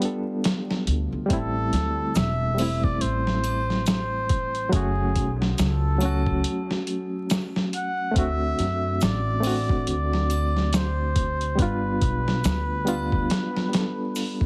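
A barky, reedy electric piano with fast tremolo, light overdrive and tape echo opens this slow, hypnotic trip hop excerpt at 70 BPM, together with a gritty, sampler-style soul drum kit whose thumpy kick, medium-tuned snare and hi-hat sit overdriven and up front over a swung 16th feel. A woody pizzicato upright bass with tube saturation joins at 0.9 seconds. At 1.3 seconds a cup-muted trumpet takes the solo melody, veiled and soft-edged with light vibrato, a smooth top, its own tape echo and classical phrasing. An egg shaker and ringing triangle sit quietly in the background from 2.2 seconds. The harmony moves from G7 through Am7, F#m and D7 and back to G7, lending a cinematic cast, while the dry, heavily compressed mix carries an old radio sound dusted with vinyl crackle, cut from a longer piece.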